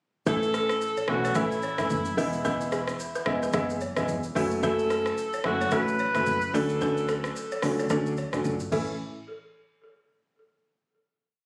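A breathy tenor saxophone sits up front with a whispered, scooped, vibrato-touched jazz melody built on hook phrases and trailed by digital delay, carrying this joyful, sunny afrobeats piece until it drops out at 7.4 seconds. Beneath it, an intimate baby grand piano with audible action noise plays short syncopated chords, while a dry, airy balafon struck with rubber mallets repeats an interlocking figure in the background through its own delay. A dark, round fretless bass bounces through a syncopated line coated in lush chorus, and an electronic afro-pop kit supplies a soft, deep kick, smooth hats, syncopated rim clicks and shaker until a final hit arrives at 9.0 seconds, all captured on a phone in the room with light reverb and compression.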